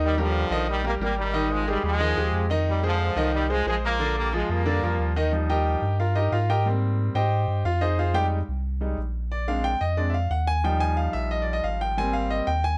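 Close, detailed microphones and a light reverb give this sunny, joyful Latin excerpt an intimate, up-front sound. A tight, brilliant trombone section with light vibrato and plate reverb carries the pop-style melody until 5.2 seconds, over a bright grand piano accompaniment and a deep, clean sine sub bass. The piano then takes a solo from 5.3 seconds, its action noise audible and its long sustain ringing through the chords.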